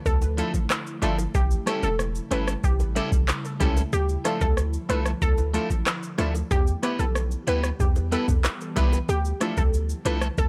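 A dry, close-sounding dancehall groove at 93 BPM, sultry and hypnotic, built on a booming analog drum machine with a deep kick, metallic hats, handclaps, rim click and shaker, sitting up front beside a boomy 808-style bass. Punchy detuned chord stabs with chorus and a round analog pluck melody carrying chorus and tape echo ride over chords moving through Dmadd9, A7 and Em, while a bright, twangy electric guitar at the edge of break-up picks arpeggios. Deep in the background, an ethereal pad with built-in reverb pumps under the beat and tight, high-tuned bongos sit low in the mix of this short cut from a longer piece.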